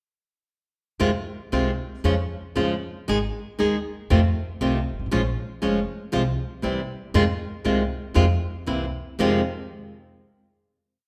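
A wet recital hall reverb surrounds this short, passionate and tense tango piece in a rubato feel, where an up-front, bright flamenco guitar with fresh strings fingerpicks short chords with audible finger squeak over a woody pizzicato upright bass marking a marcato tango rhythm in four, both playing from 1.0 to 9.4 seconds through a minor-key progression that settles on a final chord at 9.2 seconds.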